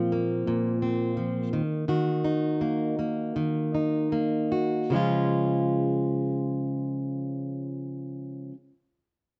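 A fingerpicked, plugged-in steel-string acoustic guitar carries this short pop excerpt on its own, sitting up front with a dark, full-bodied jumbo tone and a slapback echo trailing its notes. The mood is heartfelt yet carefree, with a gentle swing to the sixteenths in 4/4. The guitar moves from Bbsus2 to Ebm as the opening passage slows down, then settles onto Db when the second section arrives at 4.9 seconds. The sound is dry and close, captured outdoors with little ambience and a muted top end. The playing runs until 8.6 seconds, cut from a longer piece.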